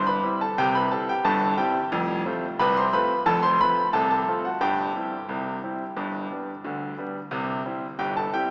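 A brilliant, up-front grand piano plays a lively, jaunty solo ragtime passage in C major at 89 BPM in a straight 2/4, ranging from F1 to C6 over chords moving from C through F, C/G and G back to C, its intimate tone carrying audible action noise inside a cathedral-like reverb with a 4.1-second decay, all heard through vinyl crackle and a small-speaker sound in this 8.5-second cut from a longer piece, tuned to A4 = 438 Hz.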